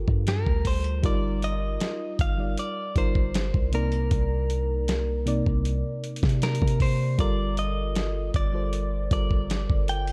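Contemporary R&B with a sensual, longing mood, this short cut from a longer piece unfolds in a straight, unhurried groove. A clean electric guitar, recorded direct and compressed, carries the picked melody in its upper register, bathed in spring reverb. Beneath it, a soft, round FM electric piano supplies the chords with a subtle noise layer and chorus, moving from Gm9 through Ebmaj7/G and Cm9 before returning to Gm9. A deep, boomy 808-style bass with a sine tone sits up front, its notes striking quickly and then decaying. The gritty, sampler-style drum kit enters at 0.1 seconds with a thumpy kick, medium-tuned snare and hi-hat, sounding re-recorded in a small room and placed close to the listener, while digital ambience gives the whole a dark, warm production.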